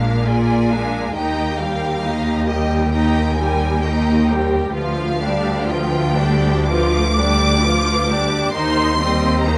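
Played with a flexible rubato in 4/4 at roughly 57 to 68 BPM, this short cut from a slow romantic movement for string orchestra feels elegiac and melancholic. The violins carry the melody high in their range with smooth, even vibrato, while a second violin line beneath adds expressive portamento. The violas fill in the accompaniment from a slightly distant position, and the cellos and double basses share the bass, the cellos clear and focused, the basses lush with a smooth top. The harmony moves from Bb7 to Eb at 1.2 seconds, through G7/D at 4.7 seconds, to Cm/Eb at 8.5 seconds. Close, detailed microphones and light reverb give the ensemble an intimate, studio presence across its 9.6 seconds.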